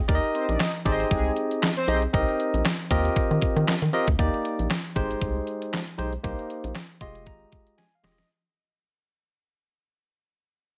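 A swung 16th-note groove at 117 BPM in 4/4 drives this smooth, danceable early-eighties boogie funk clip in Eb major, built on a detuned 8-bit drum machine with a thumpy kick, medium-tuned snare, hi-hat and handclaps, overdriven and up front, under a rubbery, hollow square bass that bounces through Ebmaj7, Abmaj7, Cm7 and Eb69 before reaching Fm9. A barky, lightly overdriven tine electric piano carries the chords from the start, while a fat, brassy analog synth brass line with chorus and vibrato appears only from 0.3 to 2.0 s. The clip fades out from 4.2 s, with an electric piano fill from 6.8 s and a drum fill at 7.8 s, all set in a light reverb.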